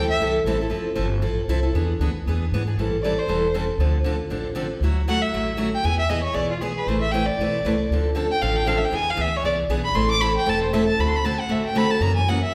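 A rich, bowed violin with smooth vibrato sits up front, sounding briefly at the start and then taking a fiery solo from 3.0 seconds to the end of this short cut from a longer piece of swinging acoustic jazz manouche in A minor at 233 BPM. A bright, picked steel-string acoustic guitar with fresh strings keeps the accompaniment close and up front, while a woody, thumpy pizzicato upright bass on gut strings anchors the low end through changes such as Am7, Dm7 and E7. The recording rings in a reverberant recital hall, lending the ensemble a spacious, church-like glow.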